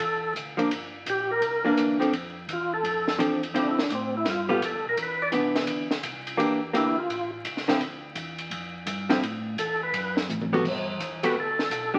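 Heard through the crackle of a very old 78 rpm record and a wet studio reverb, this smoky, soulful soul jazz organ trio excerpt swings briskly at 169 BPM in D dorian. A fat, lightly overdriven percussive tonewheel organ carries the melody through slow rotary speaker and chorus vibrato, pausing at 7.3 seconds before returning at 9.6 seconds, while a round, mellow second tonewheel organ holds the bass with key click and its own slow rotary swirl. A hollow-body archtop guitar adds dark, compressed, picked accompaniment from 0.6 seconds, and a dry compact cocktail drum kit with a punchy kick, high-tuned snare and dusky cymbals sits up front, slipping in a short fill just before the chords move to Gadd9.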